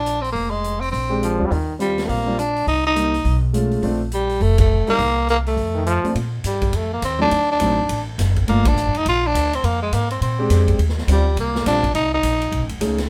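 A raspy, growling tenor saxophone carries the melody over woody, pizzicato upright bass from the start of this playful small-group swing and bop excerpt in Bb major, moving at a brisk 207 BPM with a lilting swing feel. A big-room drum kit with punchy kick, ride, hi-hat and snare drives the groove beneath, while an intimate concert grand piano with audible action noise and long sustain enters at 1.1 seconds. A brilliant, forceful trombone adds short scooped second-line phrases, and band accents land at 4.6 and 8.6 seconds across two matching sections under light reverb.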